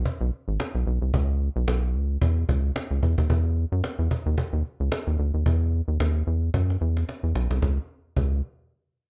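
The rhythm sits at 111 BPM in 4/4, with a light swing on the sixteenth notes that gives this early-eighties boogie funk a loose, funky, late-night feel. Up front in the mix, a rubbery square-wave synth bass with a touch of sine in its tone carries the low end, its resonant filter pluck and fast attack giving a hollow, bouncy sound that sustains into dark tones. Beside it, an acoustic cajon with snares plays in a live room, its snappy hits sitting lower in the balance than the bass. A drum fill from 6.5 to 7.6 seconds leads into a new section, and the bass rings on until 8.4 seconds. With little reverb, the whole track has the rough, close feel of a home demo cut from a longer piece.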